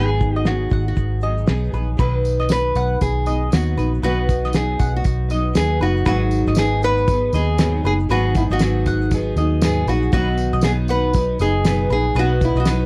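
A fingerpicked nylon-string guitar with fresh strings carries the melody up front, its small, intimate tone setting a reflective, tender mood in this acoustic pop excerpt cut from a longer piece. Beneath it, a double-tracked, fingerpicked steel-string acoustic guitar supplies accompaniment with an auditorium-sized body, while a mandolin adds woody, picked arpeggios higher up, its double strings ringing over changes that move between G#m7 and B. A vintage foam-muted, fingered electric bass sits round, dark and punchy in the mix, alongside a cloth-damped drum kit whose fat snare, tight kick and shaker sound muffled, gritty and saturated, with a rolled-off top. A jingly, band-limited tambourine joins in the background at 2.0 seconds. The whole has a lightly swung 4/4 feel and a dry, close 1970s-style studio sound with little reverb.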